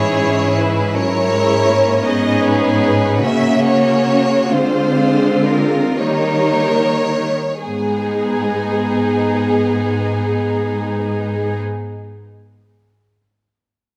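Solemn and yearning, this slow romantic movement for string orchestra unfolds in G# minor at a rubato 6/8, moving at roughly 34-55 BPM in dotted quarters and tuned to A4 = 438 Hz. A lush, expressive violin section carries the melody up front with vibrato, while a second violin line sits beneath it with a soft attack and intimate, light vibrato. The viola section fills the middle with focused accompaniment, and a clear cello section anchors the bass, its tone sounding somewhat distant. The music slows from 1.0 to 7.6 seconds, drifting through chords such as C#m/G#, F#7/C#, Dm7b5 and D#7 before settling on G#m as a new section begins at 7.6 seconds. A recital-hall reverb with a 1.6-second decay surrounds the ensemble in this short passage taken from a longer piece.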